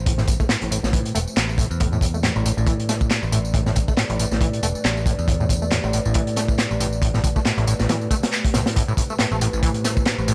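A dark, detuned analog pad holding a sustained Am9 chord with chorus and sidechain pumping opens alongside a bright, direct-and-amped picked electric bass, and from 0.1 seconds an energetic, raw 138 BPM swung breakbeat in A minor takes shape as a squelchy, resonant overdriven acid bass riff under a filter sweep, lush chorus and digital delay joins a gritty, saturated, up-front breakbeat kit with a tight kick and high-tuned snare in a small room, topped by layered, tape-warm electronic tambourine and handclaps.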